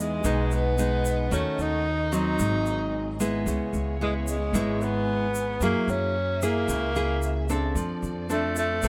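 A breathy, whispered tenor saxophone carries the melody up front in this relaxed, sunny bossa nova excerpt at 112 BPM, over a full-bodied, fingerpicked nylon-string guitar, a woody, growly pizzicato upright bass, a dark, lush bowed string section in the background and a grainy egg shaker that enters at 0.2 s, all captured with close, detailed microphones and little reverb as the chords move from Emaj7 through C#m7 and F#9 to F6.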